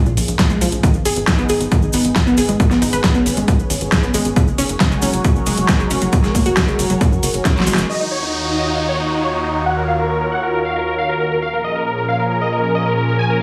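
Light reverb surrounds this driving, euphoric uplifting trance excerpt, where a thick, detuned pad with chorus, phaser and a filter sweep holds sustained chords throughout, while a tape-coloured unison pluck arpeggiates through dub echo, a tight, sidechain-pumped sequencer bass drives underneath, a grainy cabasa sits in the background, a punchy electronic kick hits up front, and an overdriven big-room kit adds a huge snare, metallic hats and crash; after a drum fill at 7.5 seconds, bright, phased supersaw chords enter at 7.9 seconds beside the sustained pad, with their own filter sweep and echo, alongside an electronic downlifter.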